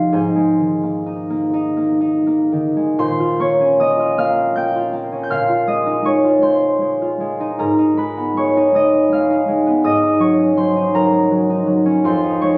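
Classical solo harp music in 6/8, wistful and mysterious, taken at a free, rubato pace in this fragment cut from a longer piece. The concert harp plays alone throughout, its thumb-plucked strings ringing and up front as it spans F2 to G6, moving from an opening Abadd9 into a second section at 3.0 seconds built on shifting minor colors such as Bbmadd9, Abmadd9 and Ebm7/Ab before settling on Fm7. A moderate recital-hall reverb surrounds the instrument, captured with the informal quality of a phone recording made in the room.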